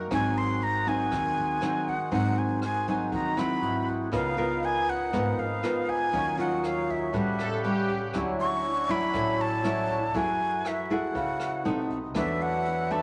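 Woody, fingerpicked nylon-string guitar and a mellow, airy accordion holding sustained chords open this melancholic, smooth bossa nova excerpt at 120 BPM, joined at 0.1 seconds by a breathy, reedy jazz flute carrying the vibrato-laced melody up front, a thumpy pizzicato upright bass and a brushed jazz kit with a boomy kick sitting in the background, while a lush bowed violin section adds a brief second line from 7.4 to 8.1 seconds, the mix bathed in moderate large-studio reverb beneath a layer of vinyl crackle.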